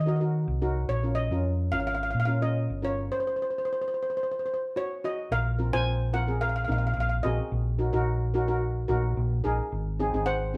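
A straight 4/4 calypso groove at 109 BPM sets this bittersweet, moody excerpt in Bb minor, cut from a longer piece. A lead steel pan struck with hard rubber sticks carries the melody up front, its tone metallic and shimmering yet dark and smooth. Alongside it, a second lead pan played with soft rubber sticks supplies mellow, gentle accompaniment, while a hollow-body short-scale electric bass, fingered and amped, anchors the low end with a round, dark voice. The harmony moves from Ebm to Bbm7 before the band breaks into a stop from 3.1 to 5.3 seconds, then returns over Bbsus2, Ebm/Bb and finally Ab. The trio sounds like a band playing live together in one large studio room, wrapped in a moderate reverb.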